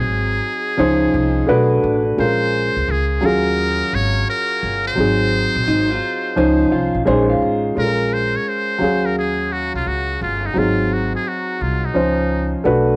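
A buzzy, thin metal-muted trumpet leads this smoky, nocturnal hip hop excerpt at 86 BPM in Bb minor, its scooped notes and light vibrato carrying a jazz-style solo from 7.8 seconds, colored by analog delay and cassette tape. Underneath, a dark concert grand piano with audible action noise and long sustain sits up front, while a woody, thumpy pizzicato upright bass on gut strings holds the low end. A clean, fingered electric guitar, compressed and treated with phaser and plate reverb, adds a second line from 0.8 to 7.7 seconds over a swung 16th-note feel, all within the moderate booth ambience of a home cassette recording.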